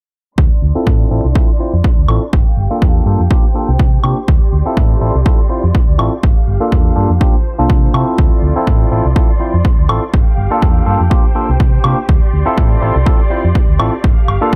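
A punchy, up-front electronic kick drives this sensual, funky filtered disco house piece at 123 BPM in 4/4 with a 16th-note swing, joined at 2.1 seconds by a tape-warm woodblock that pumps against it. A dark, round hollow-body electric bass cycles through Dm7, Gm7 and C7sus4 in D minor, and a barky, bright tine electric piano with phaser joins it at 0.8 seconds. Softer in the mix, a clear bowed string section holds sustained chords with vibrato, while a filter sweep runs the length of this section and a digital ambience frames the sound.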